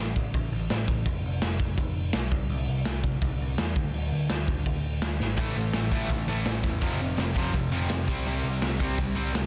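An overdriven, picked electric bass opens this urgent, angry punk rock excerpt at 167 BPM in A minor, its growly, punchy tone rumbling low in a straight 4/4. A raw garage drum kit joins at 0.2 seconds with hi-hat, a boomy kick and a medium-tuned snare, sounding gritty and up front in a small, pumping room with a rolled-off top. A drum fill at 5.2 seconds sets up the arrival of three electric guitars at 5.4 seconds. A double-tracked, compressed fuzz guitar and two tight distorted guitars play a bright, picked riff over A5, F5 and C5 power chords, sitting in the background behind the bass and drums. Little reverb colours the sound, and the dense, heavily limited master keeps the short burst compact and confrontational.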